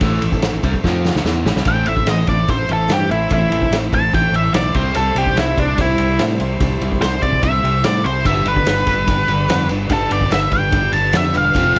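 An up-front, dark octave-fuzz lead guitar solos from 1.7 s over a brooding, gritty classic rock groove in A minor at 146 BPM, driven by a vintage drum kit with a punchy kick, a pumping small-room sound and a drum fill at 0.8 s, a growling overdriven fingered bass, very quiet overdriven electric and semi-hollow guitar riffs, a double-tracked fuzz guitar riff entering at 8.2 s, a silky string machine holding soft chords, a woody, boxy acoustic archtop guitar in the background, and a jingly tambourine, all under light reverb as the chords move from Am to C to G.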